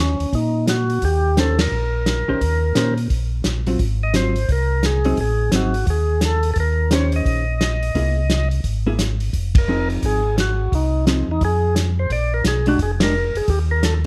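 A percussive tonewheel organ with key click and a slow rotary speaker carries the melody, bathed in plate reverb, while a second, round and mellow organ holds down the bass line through its own slow rotary speaker in this greasy, soulful soul jazz organ trio excerpt at 173 BPM with a swung 4/4 feel. A soul drum kit with dark cymbals and a tight kick sits up front from 0.2 seconds, and a dark, clean hollow-body jazz guitar comps from 1.4 seconds. The band hits accents together at 1.5, 9.5 and 13.0 seconds over rich changes moving from Eb13 through Adim7 and C7alt to a final Eb.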